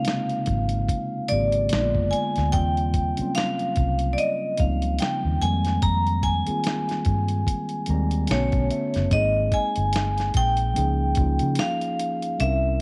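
Sultry and soulful, this neo-soul R&B excerpt moves at a relaxed swing, with a bright, ringing vibraphone carrying the melody through a slapback echo over a mellow tine electric piano that plays chords such as Bbm9, Eb13 and Abmaj9 and adds a fill from 7.5 to 9.1 seconds. A gritty, tape-warmed sampler-style drum kit with a thumpy kick sits up front, and a dark, round, foam-muted electric bass joins at 0.5 seconds. Light reverb gives the mix a soft digital ambience, and the passage shifts into a new section at 9.1 seconds.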